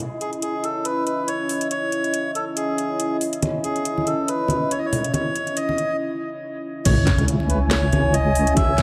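A moody, detuned analog pad opens this dark, brooding deep dubstep excerpt in C# minor at 140 BPM with a swung half-time feel, soon joined by a reedy, nasal melodica carrying the melody through dub echo and a garage drum kit with cracking snare and metallic hats. Distant, hard-handed congas enter at 3.4 seconds, and after a brief break the drop lands at 6.9 seconds with a deep, compressed wobble bass up front, a knocking electronic kick and a very quiet sub drop impact, followed shortly by an airy, wind-like tuned noise texture drifting in the background. The whole excerpt sits in a moderate echo-chamber reverb, with the harmony opening on a C#madd9 chord.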